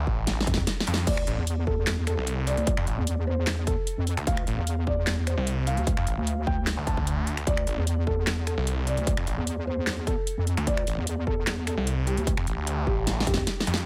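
Heavy and aggressive, this excerpt from a longer heavy wobble dubstep piece sits at 150 BPM in a half-time 4/4 feel in D minor, with the whole 13.9 seconds playing as a drop over a Dmadd9 chord. A snarling, distorted saw bass growls from the very start, its bright, detuned sawtooth tone carrying a moving notch and heavy overdrive, while a resonant, chorused wobble bass built on square and sine waves joins at 0.5 s to add a saturated, detuned pulse. An overdriven electronic kick punches in almost at once and briefly drops out from 0.7 to 1.1 s. A dubstep drum kit with a huge snare, metallic hats, crash cymbal, finger snaps and handclaps plays fills at the opening and again near the close, its layered sound carrying a tape-like glow. Above the low-end weight, a felt-muted upright piano enters at 1.1 s with a soft, intimate, dark melody touched by delay, its audible action noise adding a natural texture. 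The mix is dry and close, with the basses and drum kit pushed up front.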